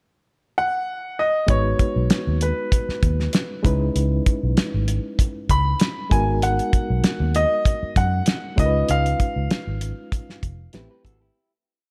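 Lush 1970s-style soul with a silky, cinematic mood and a lightly swung sixteenth-note feel. A clear, natural grand piano opens alone at 0.6 s with a motif-based melody of call phrases, and at 1.5 s the band joins: a cloth-damped drum kit with a fat snare, tight kick and rolled-off top settles into a smooth mid-tempo groove, while a foam-muted fingered bass, round and punchy, plays a melodic line with muted ghost notes. A reedy, barky electric piano, lightly overdriven with fast tremolo, holds rootless chords sprinkled with grace notes beneath the melody. Just before the end, at 10.7 s, an electric guitar through a small old amp slips in with a brief, slightly broken-up, lo-fi fill in thirds, touched by vibrato. The dark production sits in light reverb and studio ambience, with drums, bass and piano up front, and the whole piece fades out from 8.9 s.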